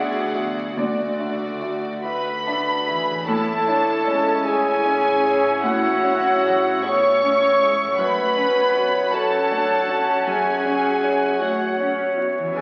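This moving, uplifting cinematic film-score excerpt opens at 0.0 s with the full string body, grand piano and harp sounding together in A major, in a slow, rubato 6/8 of roughly 47-53 BPM in dotted quarters. A dark, intimate violin section carries the melody with light vibrato and a soft sul tasto bow, over a second, floating violin line set in the background. The polished, present piano and a very quiet, pure viola section provide the accompaniment, while a bright, ringing harp plays fingerpicked arpeggios in the background. Cellos and double basses hold the bass. At 2.0 s an airy, hollow silver flute joins on a second line, and a distant, roomy French horn section adds sustained chords. From 3.3 s a clear, faraway clarinet and a mellow solo cor anglais add further lines as the harmony moves from Dadd9 through Amaj7 to F#m, all wrapped in a wet scoring-stage reverb and the crackle of a very old 78 rpm record.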